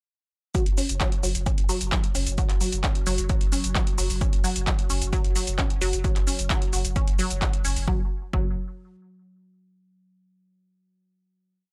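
Driving peak-time techno in a straight 4/4, this short, relentless piece launches straight into a drop at 0.5 seconds and holds it until 7.9 seconds, when a final note rings out. A punchy, up-front electronic kick pounds four-on-the-floor, joined by a programmed kit of metallic hats, shaker and handclaps on the backbeat. A thick saturated sub bass sits on F#1 with overdrive and a low-pass filter, its sidechain pumping leaving a low rumble between the kicks. Over this, a squelchy, resonant blip pluck runs a 6-step loop that drifts against the bar, colored by phaser, analog delay and pumping. Entering at 1.6 seconds, a mellow analog drone on F#3 breathes in the background with chorus and a moving notch. The production is dry and gritty, with little reverb and the sound of hardware.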